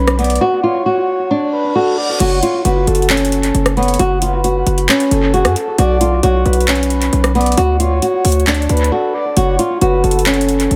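A half-time trap groove in 4/4 sets a dark, eerie mood as a fingerpicked acoustic flamenco guitar carries the melody up front, its finger squeaks audible through a low-pass filter and analog delay, while a soft, breathy flute-like synth lead with vibrato and chorus sustains a second line above it. A punchy, heavy 808-style bass with a fast attack and decaying tail sits up front, and an electronic trap kit of metallic hi-hats, handclaps, rim clicks and crash cymbal enters at 0.1 seconds, its hits trailed by analog delay. An electronic reverse cymbal rises into the shift from a chordless opening to chords moving from F#m through Bm and D at 2.2 seconds, and a brief break at 8.9 seconds punctuates this echo-heavy, lightly reverberant passage cut from a longer piece.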